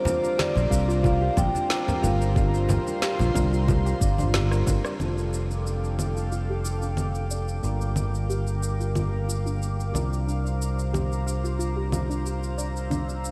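A bright, growly fingered electric bass sits up front in this relaxed, blissful sunset chillout excerpt at 91 BPM in F major, beneath a mellow soft-mallet vibraphone melody that rings until 4.3 s, round electric-piano-like synth keys with chorus and tape echo, an airy, breathy pad, dark pluck arpeggios in the background, a tape-toned electronic shaker, woody snare, congas and rim click, plus an electronic kick and hard-handed acoustic congas that both stop at 4.8 s during a drum fill, with the whole mix soaked in huge dreamy reverb.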